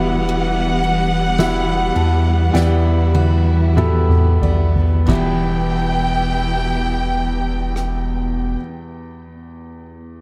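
Heartbroken and emotional, this slow pop ballad in E minor moves at 45-57 BPM in a straight 4/4, easing into a slowdown over its first 5.1 seconds before the harmony settles from Emadd9 to plain Em. A close, expressive violin section carries the melody with vibrato, while a felt-muted upright piano supplies soft, intimate, vintage-toned accompaniment and slips in a fill from 1.4 to 5.1 seconds, ringing on alone until 10.2 seconds. Beneath them, a studio string section holds sustained chords in the background with portamento and a smooth top, and a bright, full-bodied steel-string acoustic guitar picks arpeggios through tape echo, its fresh strings catching an audible finger squeak. A deep, round sine sub bass sits up front with a fast attack and sustained notes. In the background, a soft-mallet drum kit with dark cymbals, a fat snare and a boomy kick adds a fill from 2.5 to 5.1 seconds, all held together by a small room reverb in this fragment cut from a longer piece.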